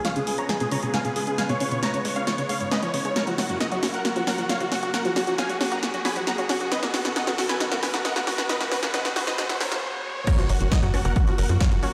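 A huge, thick supersaw carries the melody of this soaring, uplifting trance fragment, its detuned, compressed tone pumping against the beat through a low-pass filter and echoing with delay. Around it, a round analog pluck runs arpeggios under a filter sweep, a lush, bright unison pad holds sustained chords with chorus and a touch of vintage sampler grit, and a very quiet, mellow unison lead adds a catchy second line. A punchy, tape-toned analog drum machine drives a fill of snare, rim clicks, hats and crashes through the build-up, while a faint electronic riser climbs beneath it. After a short break at 9.8 seconds, the drop lands at 10.3 seconds with an impact and an up-front punchy kick, joined moments later by a tight, nasal sequencer bass that pumps in time. The whole mix sits in a wet hall reverb and sounds as if played on a big system in a bare stone room.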